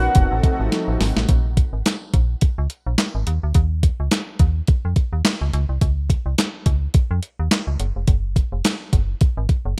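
A dry, rough home-demo mix frames this late-night, slick slice of early-eighties boogie funk in Bb minor at 106 BPM, with a light swing on the 16ths. In the opening moments a fat, nasal analog lead with phaser and tape echo plays a brief solo over mellow, brassy synth brass with chorus and a lush, thick unison pad with chorus and phaser, the harmony resting on an F7b9 chord as the drums play a fill. The upper synths then drop out one by one, the lead first, then the brass, then the pad, so that from 1.3 seconds the up-front, metallic FM bass and a crisp, overdriven 8-bit drum machine with thumpy kick, snare, hi-hat and handclaps carry the groove to the end of the excerpt.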